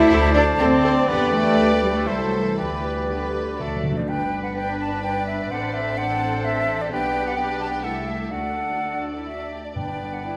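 Classical and cheerful, this lively, dramatic romantic movement for symphony orchestra moves at 117-129 BPM in G major triple time, with a distant, lush violin section carrying the melody in the background while flute, oboe, clarinet and a second violin section weave second lines, a very quiet viola section accompanies, a warm French horn section holds sustained chords joined until 3.8 s by a bright, very quiet trombone section, cello and double bass sections anchor the bass, and hard-mallet timpani strike at the start, fill from 3.6 s and return at 9.8 s, all within a wet recital-hall reverb.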